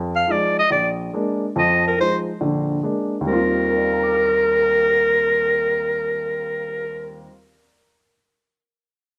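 Swing jazz with a playful, warm mood, cut from a longer piece: a clear clarinet carries the melody from 0.2 s with light vibrato and subtone, sitting present and up front in a plate reverb. Beneath it, a woody upright piano with long sustain accompanies until 8.2 s, moving between Fm7 and Bb7 before settling on Eb6 at 3.3 s. The moderate studio ambience carries some lossy compression artefacts.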